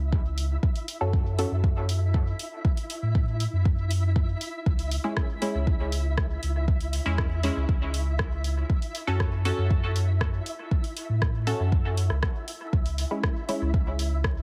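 This excerpt from a longer dub techno piece opens with a smooth, clean sine sub bass and a flickering, grainy granular texture, set in a nocturnal, deep mood at 119 BPM in a straight 4/4. An up-front electronic kick arrives almost at once, and by 0.4 seconds a deep house kit adds hi-hat and rim click trailed by dub echo, both drum parts carrying the boxy character of a small room. From 1.0 seconds a muted, detuned chord stab with a filtered pluck, chorus, phaser and dub echo sits mellow in the mix, while the bass, texture and stabs all pump with sidechain compression. The harmony moves slowly between C#m and F#m, with the dark sub bass holding the low end under a faint, reverberant shimmer from the texture. The whole track sits inside a heavily compressed, radio-like ambience dusted with vinyl crackle.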